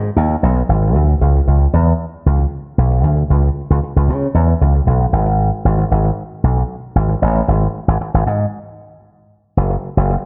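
A straight 4/4 funk groove at 115 BPM in C# minor, this slick, danceable fragment of a longer piece features a solo slap bass through an envelope filter, bright and punchy, close and amped, with a touch of slapback echo in light reverb, ranging from F#1 to C#3 before a break at 8.5 seconds and carrying on until 10.2 seconds.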